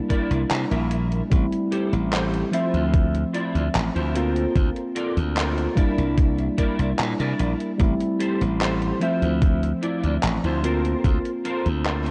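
A straight 4/4 pulse at 74 BPM comes from a thumpy, overdriven electronic kick drum up front and a detuned 8-bit drum machine whose handclaps and hi-hat carry overdrive and gated reverb, setting a woozy, nostalgic vaporwave mood in this passage cut from a longer piece. A mellow tine electric piano with analog chorus and tape echo carries the harmony through C9, Am7, Dm9 and Bbmaj9/D, while a glassy, punchy slap bass sits up front and a dark, clean electric guitar picks a riff through ensemble chorus and tape echo. The recording has the dulled top end of cassette tape with light reverb and digital ambience, and the kick drops out at 11.2 seconds.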